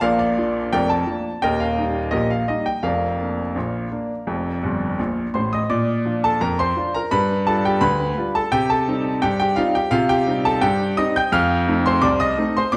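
A straight, even 2/4 pulse drives this short ragtime piano passage, cut from a longer piece, with a playful, cheerful mood. A lone baby grand carries everything, its tone clear, intimate and natural, sitting up front with the clatter of its action audible beneath the notes. The playing spans from a deep Eb1 up to a bright G6, moving through a Bb, Eb and F opening before a fill from 4.6 to 5.7 seconds leads into a new section. That second part turns toward G7 and Cm and reaches F7 at 11.3 seconds, where the excerpt runs on until 12.8 seconds. A recital hall's reverb wraps the piano in a roomy, wet ambience, giving the close, detailed instrument a sense of the church or concert hall around it.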